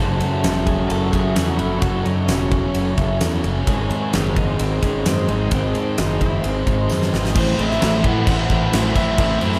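A dreamy, hazy mix soaked in a huge ambient reverb opens this short cut from a longer shoegaze and dream pop rock piece, moving at 130 BPM in a straight 4/4 over F#m, then G#, then Am. A thick, dark fuzz guitar with lush chorus and a fuzz-driven, round, punchy fingered bass carry the low end, while an overdriven electric guitar plays a compressed riff in the background, bathed in reverse reverb. A huge arena drum kit sits up front from 0.2 seconds, with a fat snare, punchy kick, crash and ride ringing in a big room, and a very quiet, jingly tambourine adds close, dry sparkle. Above them, an electric guitar through a small old amp carries a twangy, slightly broken-up lo-fi melody with analog delay, and a glassy FM pad holds ethereal, slow-blooming chords behind everything. A very quiet, shimmering twelve-string acoustic guitar picks octave-doubled arpeggios until a drum fill at 6.9 seconds leads into the Am passage at 7.4 seconds.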